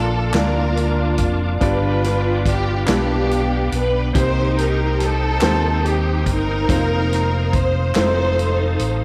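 In a straight 6/8 lilt at 47 BPM, this slow, uplifting and reverent gospel passage in Bb major sets lush, bowed strings carrying the melody up front over a round, dark fingered electric bass and a clear, vintage grand piano, while a reedy tonewheel organ with fast rotary speaker, chorus vibrato and key click holds sustained chords in the background, and a big-room acoustic drum kit with punchy kick, snare and hi-hat enters at 0.3 s alongside very quiet, crisp group handclaps, all under light reverb as the harmony moves from Bbmaj7 through G7 and Cm7 to F7sus4 and F7.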